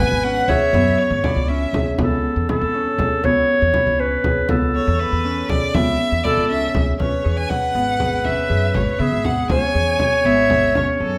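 Pensive and restless, this contemporary chamber piece moves in a straight 5/8 at 240 BPM (eighths) in C# minor, with a mellow, classical-style clarinet carrying the second line up front while a fingerpicked Celtic harp rings out arpeggios over a woody, thumpy pizzicato upright bass. A deep frame drum enters at 0.5 seconds, and the clear, focused bowed violin with vibrato states the melody from a distance, drops away at 1.9 seconds and returns at 4.8 seconds. The harmony shifts between C#m7 and Aadd9/C#, and a moderate recital-hall reverb surrounds the ensemble.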